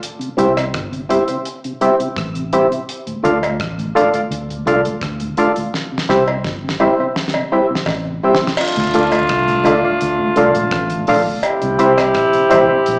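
A straight 4/4 pulse at 84 BPM from a damped 70s drum kit with a fat snare, tight kick, rim clicks and slapback echo drives this serious, meditative roots reggae fragment in D minor, where a foam-muted, round electric bass, cowbell and jawbone-type rattle, a mellow tonewheel organ turning through a slow rotary speaker and hollow, nasal organ stabs sitting up front move between C and Dm. A drum fill at 5.7 s leads into a distant horn section with tape echo entering at 8.6 s, and the performance sounds like a live gig heard through the venue's PA, with a small speaker sound, club reverb and moderate, lush hall reverb.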